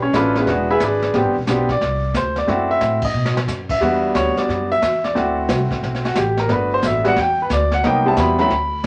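A brisk swing at 179 BPM in 4/4 drives this short cut from a longer jazz piano trio performance, its eighth notes swung at 64 percent in a lilt that gives the music a playful yet sophisticated air. The clear, intimate baby grand carries the melody up front, ranging from F#3 to B5 with long sustain and a natural tone, the faint sound of its action audible beneath the notes. Pizzicato upright bass with steel strings supplies a woody, warm low line from the first moment. Brushed drums add a dark, smooth texture with dark cymbals, a medium-tuned snare and a boomy kick, joining at 0.1 seconds. The harmony moves through rich extended chords such as Am11, F#m7b5, Em9 and Gmaj9, and the whole band strikes an accent at 3.0 seconds before a short drum fill. A moderate club reverb places the trio in a club-like room.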